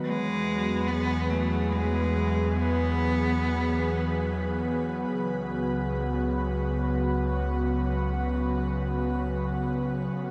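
A clear, bowed solo cello with vibrato sings a short melancholic line from 0.1 to 4.7 seconds through shimmer reverb and tape echo, alongside an airy, breathy pad with chorus and shimmer and a deep, round sub bass, in a spacious free-time ambient fragment tuned to A4 = 439 Hz that drifts from E to C#7sus4 at 5.1 seconds and sits in a dreamy, cathedral-like reverb.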